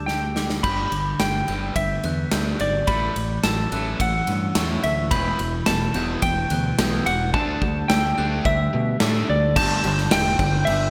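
Cinematic and soaring, this post-rock excerpt opens with a short drum fill from a big rock kit as a twangy, slide-played lap steel carries the melody over soft arpeggios from a very quiet clean electric guitar, sparkling glockenspiel arpeggios struck with brass mallets, and a growling overdriven fingered bass, and from there the music builds. A distorted, scooped guitar riff enters at 0.6 s and a crunchy second guitar joins at 5.1 s, both sitting in the background, while slapback echo colours the lap steel, glockenspiel and distorted guitar. Lush hall reverb gives a big arena sound, with the drums up front in a bright stone room.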